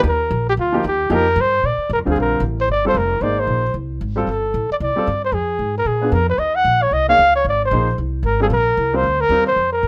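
A woody, thumpy pizzicato upright bass and an intimate grand piano with audible action noise open this warm, sophisticated fragment of small-group swing and bop at 227 BPM in Bb major, joined at 0.1 seconds by an up-front, mellow flugelhorn soloing with light vibrato and a soft attack over extended harmonies such as Ebmaj9 and Bb7b9, in a lightly reverberant room, with the piano stopping at 9.5 seconds.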